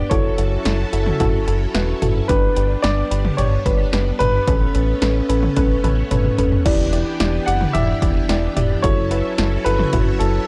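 A punchy analog drum machine drives this straight 4/4 synth-pop excerpt at 110 BPM, its kick and snare joined by hi-hat, crash cymbal and toms, with a drum fill from 5.6 to 6.7 seconds leading into a second section as the chords move from F#m7 through G and Aadd9 to Em7. A deep, round analog bass sits up front beneath a soft, wave-folded pluck with chorus, shimmering vintage string-machine violins holding sustained chords, and a polished grand piano carrying the melody through tape echo. The mood is cool and driving, and the dry, gritty cassette sound keeps it close.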